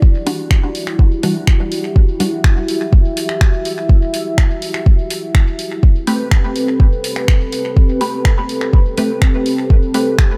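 A dark, chorused analog pad pumping against an up-front deep kick opens this deep, nocturnal dub techno excerpt, joined at 0.3 seconds by a tape-warm kit of finger snaps and hi-hat trailing dub echo, while a resonant, detuned chord stab with phaser and echo moves through a filter sweep, drops out at 2.4 seconds and returns at 6.1 seconds, just after the harmony shifts from Em9 to Am9, all set in an echo-heavy mix with light reverb.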